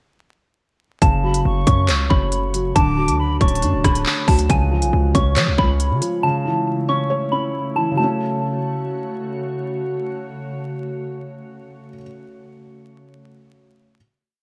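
A half-time drill beat at 138 BPM drives this dark, menacing hip hop piece in F# minor, its electronic kit of hard-clipped kick, crisp skipping hi-hats with fast rolls, handclaps and rim clicks sitting up front in a small room with gated reverb until 6.1 seconds. Beneath it, a hard-hitting 808-style bass with a noise layer holds long, punchy sub-bass notes that follow the kick and slide in pitch. Over a progression of F#m, Dmaj7, C# and A, a felt-muted upright piano repeats a rising and falling eighth-note arpeggio like a sampled loop, intimate and close, with its action noise audible. A soft, pure FM synth bell carries the looping melody with chorus and delay, while a distant, airy concert flute with vibrato adds a sparse, tongued counter-melody through delay from 1.2 to 4.0 seconds. A glassy, ethereal FM pad swells in slowly with ensemble chorus and its own reverb, and after the beat and bass drop away, the piece settles onto a final F#m chord from 8.0 seconds, with the piano lasting until 14.0 seconds. 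The bright 1980s-style digital production, moderate plate reverb and vinyl crackle frame the whole.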